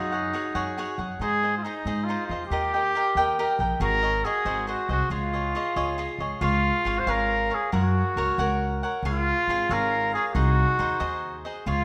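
A clear, classical-style solo trumpet carries the melody in this festive, romantic mariachi excerpt in 6/8 at 92 BPM in Db major. A bright, crisply picked cavaquinho and a woody, growly pizzicato upright bass play underneath through chords such as Gbsus2, Ab7sus4 and Dbadd9. At 6.4 seconds a second section settles onto Db, Gb and Ab/C, all in a moderate concert hall reverb.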